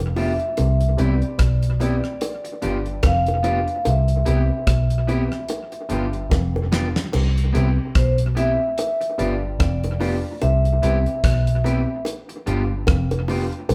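Roots reggae at 73 BPM in C major, this laid-back, warm fragment from a longer piece rocks gently between G7 and Cmaj7 with a swung sixteenth-note feel. A dark, round, foam-muted electric bass sits up front in its low register alongside a damped 70s drum kit with a tight kick, medium-tuned snare and dark cymbals, which rolls into a fill from 6.3 to 7.1 seconds before the second section. A vibraphone carries the melody with a metallic, ringing tone and slow motor vibrato, while a picked, twangy electric guitar at the edge of break-up fills out the accompaniment. In the background, a natural baby grand piano plays stabs and a stringy, percussive muted clav repeats a riff through an analog delay. High-tuned bongos, struck with hard hands and also fed through an analog delay, add close, tight percussion. The band plays live together in one room, bathed in a large studio reverb.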